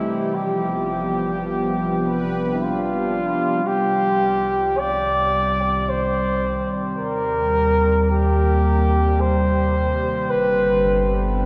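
Reflective and spacious, this slow ambient passage in 3/4 at 54 BPM settles into C minor at 3.7 seconds, with a mellow, distant flugelhorn melody carrying tape echo over a smooth, chorused analog pad that fades in from 3.7 seconds, a round, deep analog bass, a tense, string-like bowed drone, a barely audible ringing handpan at 2.6 seconds and a very quiet, glassy glass harmonica, all bathed in a wet cathedral reverb within a dark, warm production.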